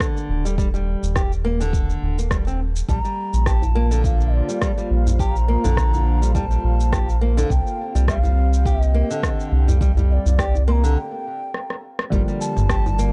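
A round, dark analog bass pumps up front through this meditative, earthy organic downtempo piece at 104 BPM with a light swing, beneath fingerpicked nylon-string guitar arpeggios with tape echo, a layered deep house kit of rim click, shaker and toms over a deep electronic kick, a chiff-edged bamboo bansuri with vibrato and analog delay entering at 2.9 seconds, a breathy chorused pad, a soft-handed djembe in the background, and a felt-muted upright piano with audible action noise arriving at 12.1 seconds, the whole mix carrying a dry, gritty hardware sound with studio reverb.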